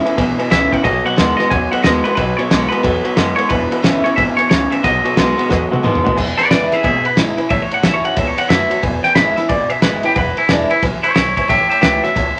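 Upbeat, retro rockabilly with a swung eighth-note feel, built on a thumpy, gut-string pizzicato upright bass, a cloth-damped drum kit with a fat snare and dark cymbals, a picked archtop acoustic guitar with old strings, and a detuned, jangly honky-tonk upright piano sitting in the background. Up front, a bright, compressed twangy electric guitar carries the melody while a slightly broken-up, lo-fi electric guitar through a small old amp plays a low riff until 6.2 seconds. A drum fill from 5.5 seconds and a brief piano fill lead into the second section, where the twangy lead turns into a clean solo over the E6 and A6 changes.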